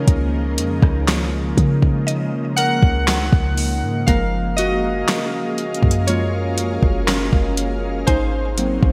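Detuned analog synth keys with a round, full-bodied tone and a sweeping filter take the lead throughout this smooth, dreamy contemporary R&B fragment, chorused and up front over chords moving from Db69 to Gbmaj7 and on to Ab9 at 8.1 seconds. An ethereal, airy pad with a slow attack and long release sustains the harmony beneath, while a deep, boomy 808-style sine bass anchors the low end and a woody, mallet-like FM pluck glints in the background through chorus and delay. A tape-toned electronic drum kit enters at 0.1 seconds with a soft kick, fat snare, metallic hats and rim clicks under gated reverb, all set in a lush hall within a bright 1980s-style digital production.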